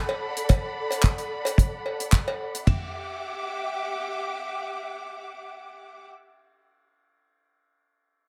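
A lush, dark symphonic string section opens this sensual, sleek nu-disco excerpt with bowed, vibrato-rich sustained chords, moving from D6 to Em9 at 2.7 seconds, pumping under a sidechain and softened by a low-pass filter. A small-room cowbell, airy and polished handclaps and hi-hat from a tight funk kit, and a deep reggae kit with a tight kick, ride cymbal and toms join with a light swing. The reggae kit sits dry and up front with a rolled-off top, and the drums fall away by 2.8 seconds, leaving the strings alone until 6.1 seconds in a small room.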